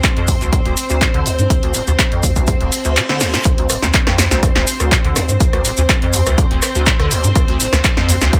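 A punchy, tape-warmed analog kick and drum machine drive this raw, gritty acid house excerpt in straight 4/4, with handclaps, hi-hat, rim click and snare up front in a small room, grainy maracas close by, and a deep, round sine sub bass pumping in the background. A squelchy, resonant square-wave acid bass riff with a filter sweep, tube saturation, chorus and delay runs over a lush, bright sawtooth string machine that holds a Dm7 chord with ensemble chorus and sidechain pumping. A reverse cymbal enters at 2.7 seconds, the kick drops out at 3.0 seconds just ahead of a drum fill at 3.1 seconds, and the drop lands at 3.5 seconds.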